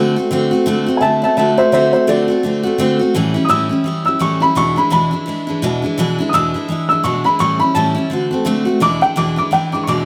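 Rock with a rowdy, retro swing, cut from a longer piece, where a bright, full-bodied picked steel-string acoustic guitar sits up front with fresh-stringed accompaniment from the start while a dark, woody upright piano carries the melody from 1.0 seconds over dominant-seventh changes, all wrapped in a moderate echo-chamber reverb.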